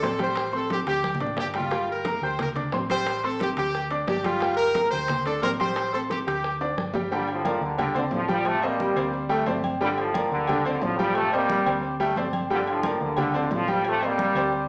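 A wet, roomy sound heard from further back, with a small-speaker quality, frames this fiery, passionate salsa excerpt at 178 BPM in 4/4, built on vamping D7sus4 and G minor chords. A clear, punchy horn section carries the melody up front until 6.6 s, then at 7.1 s a brilliant, vintage-toned trombone section takes over the lead over a smooth-topped second trombone line, as the harmony moves through Gm7, D7sus4 and Am7b5. Throughout, a polished grand piano with short sustain drives the accompaniment, a dark, round hollow-body electric bass anchors the low end, hard-hand congas and ringing metal-shell timbales with agogo bells sit in the background, and tight, high-tuned bongos with cowbell stay very quiet, with drum fills arriving at 0.7 s and 6.6 s.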